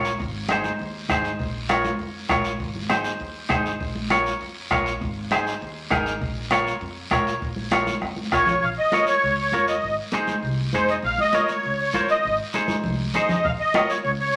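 A fiery, danceable cumbia groove at 199 BPM in straight 4/4 drives this Bb minor excerpt, with raspy, close guiro, high-tuned congas with a thick skin, and a soft-beaten, vintage bombo that drops out at 8.5 seconds before a brief late return. Underneath, a woody, thumpy pizzicato upright bass on gut strings anchors the alternating Ab and Bbm chords, while a bright, clean, compressed semi-hollow guitar sits up front with a spring reverb. At 8.3 seconds, during a drum fill, a reedy, shimmering musette accordion takes the melody up front, all set in a wet studio reverb.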